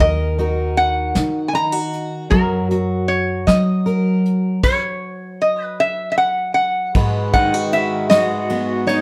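A moderate studio reverb gives this short acoustic folk excerpt a natural room glow, with a hopeful, pastoral mood at an unhurried 52 BPM in a straight 6/8. A metallic, nasal resonator slide guitar carries the melody up front, played with fingerpicks, over a full-bodied fingerpicked dreadnought whose finger squeaks come through as it moves from D#m to F#. A woody pizzicato upright bass sits close to the listener until 4.6 seconds, while a soft brush kit with dark cymbals, a punchy kick and a medium-tuned snare keeps time throughout. A reedy, breathing pedal harmonium slips in at 6.9 seconds with mellow sustained chords in the background. As the harmony shifts to G#m7, an electric guitar through a small old amp adds slightly broken-up, lo-fi, compressed arpeggios with tremolo from 7.3 seconds.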